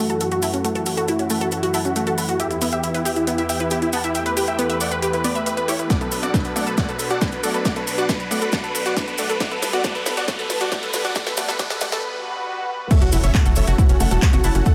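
A huge, detuned supersaw lead carries the melody of this euphoric, driving uplifting trance excerpt through a filter-swept build-up, over a lush, airy unison pad with 12-bit sampler grit and chorus and a round analog pluck arpeggio with chorus and delay, while a layered techno kit of cracking snare, metallic hats, handclaps, percussion blips and crash, grainy background maracas and a riser gather until a punchy, tape-warm kick enters at 5.9 s, and after a brief break and swell the drop lands at 12.9 s with an impact, a tight sawtooth sequencer bass pumping to the sidechain, and a very quiet, dark grand piano second line.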